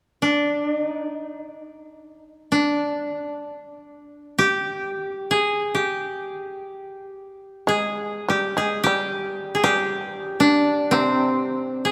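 In free time, this austere, calm fragment of Japanese traditional chamber music unfolds in G miyako bushi, tuned to A4 = 438 Hz, with a bright, woody koto carrying the melody from 0.2 s, plucked with fingerpicks and placed up front. At 7.7 s a fretless shamisen joins as a lower second line, its plectrum-plucked attack percussive and buzzing, shortly before the music moves into a new section at 8.8 s. A church reverb with a long tail surrounds the ensemble, lending the spare phrases a spacious, contemplative air.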